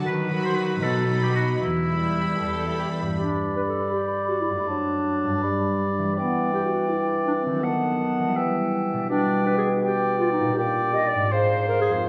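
This classical excerpt from a fast romantic orchestral movement in a rubato 6/8 feels dramatic, stormy and restless. It opens with bowed string sections of vibrato-rich violins carrying the melody and a second line, lush distant violas and smooth cellos on the bass, alongside a ringing concert harp's arpeggios and a clear, roomy oboe line. Around 3.2 s the strings stop and the music turns to a major-key passage where a mellow clarinet, a pure, hollow silver flute with crisp attack and a vintage-toned bassoon join the harp and oboe, the harmony darkening toward its close. A wet scoring-stage reverb gives the whole ensemble a spacious sheen.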